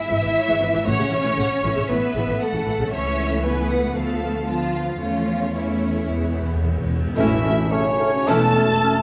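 Lush, bowed string sections open a fast, graceful and lively romantic orchestral passage in A major at 114 BPM with a rubato feel, the violins carrying the melody and an up-front second line over a portamento viola accompaniment, a background cello bass and a woody double bass, while round soft-mallet timpani, a dark cymbal swell with tam-tam from 2.9 s and a timpani fill at 6.1 s lead to a band accent at 7.2 s, where a hollow flute, a distant mellow cor anglais, a smooth clarinet, a very quiet dark bassoon and a roomy French horn section join in the reverberant space of a scoring stage.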